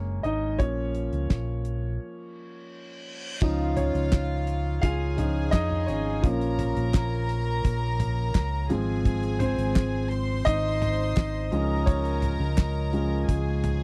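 A dry, close 1970s-style studio sound frames this uplifting, anthemic piano-driven pop excerpt at 85 BPM in Db major, where an open, long-sustaining grand piano takes the lead over a round, punchy hollow-body electric bass and a damped drum kit with a fat snare and tight kick; a reverse cymbal sounds during the break at 2.6 seconds, a soft-attack, floating violin section joins at 3.4 seconds, and crisp group handclaps sit in the background from 4.1 seconds.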